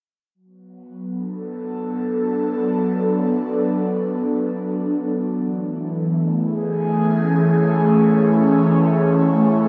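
Soaked in a huge, wet reverb with an 8.0-second tail, this dreamy ambient passage, cut from a longer piece, feels deep and meditative. A single airy, breathy synth pad sits up front, entering at 1.0 s and holding sustained chords that span E3 to A4. Its detuned sawtooth and triangle tones carry a soft noise layer, with a slow attack and a long release, and a chorus and phaser add movement to the sound. The harmony rests on Bm7 before shifting to Amaj7 at 5.3 s, while the pad fades in gradually from 0.3 s to the close at 9.7 s.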